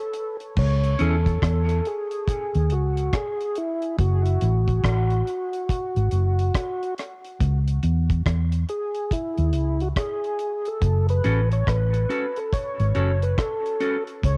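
A home cassette recording with light reverb and studio ambience carries this heavy, hypnotic dub reggae excerpt in C# minor at 70 BPM with a swung 16th feel, where a mellow, lightly overdriven tonewheel organ leads the melody through chorus vibrato, slow rotary speaker and dub echo over a dry reggae drum kit with a tight kick, crash, hi-hat and rim click; a dark, round, punchy, foam-muted fingered electric bass enters up front at 0.6 seconds, and a clean, picked electric guitar with dub echo briefly appears at 1.0 seconds before returning at 11.2 seconds over the alternating C#m and F#m changes.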